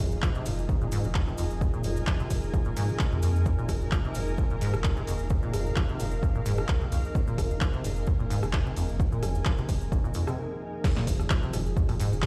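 A slightly swung 4/4 groove drives this hypnotic, gritty acid house cut from a longer piece, built on an overdriven, up-front electronic kick and a punchy analog drum machine with crash cymbal, handclaps, hi-hat, rim click and snare, while a grainy, close cabasa sits in the background. A squelchy, resonant sawtooth acid bass riff with filter sweeps, tube saturation, lush chorus and analog delay rides over a round sine sub bass, and both pump against the kick. Above them, a vintage, full-bodied string machine holds sustained chords opening on Fm7 and a cloudy, blurred granular pad evolves slowly, all under light reverb in a large bare room, with a short break at 10.4 seconds before the drop lands at 10.8 seconds.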